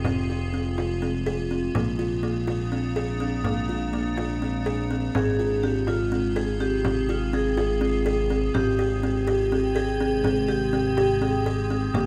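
Closely miked with light reverb, this urgent, hypnotic contemporary chamber piece in 7/8 at 247 BPM (eighths) sets a woody, buzzing kalimba's arpeggios up front over a smooth, gliding synth bass, an icy, crystalline glass pad with chorus, and a small, bright frame drum in the background, while a metallic, ringing vibraphone adds a second line from 5.1 seconds as the harmony moves through Fm, Bb7, Fm/Ab and Abmaj7.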